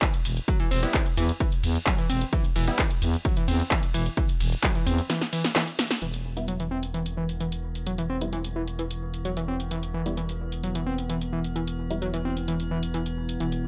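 Driving peak-time techno at 130 BPM in E minor, dark and intense, opening on a drop where an overdriven kick, a punchy analog drum machine with handclaps, hi-hat, ride and snare, and a growling FM bass all sit up front beneath a screaming, guitar-like synth lead riff with tube saturation and analog delay. A detuned rave stab with ring modulation and tape echo flickers in the background, the kick stops at 4.7 seconds ahead of a drum fill and band accent, and at 6.0 seconds the music settles onto Em. An eerie, metallic inharmonic drone with a slow attack then enters at 6.9 seconds, the bass, stab, drone and hats all pumping against the sidechain in a dry, gritty hardware sound.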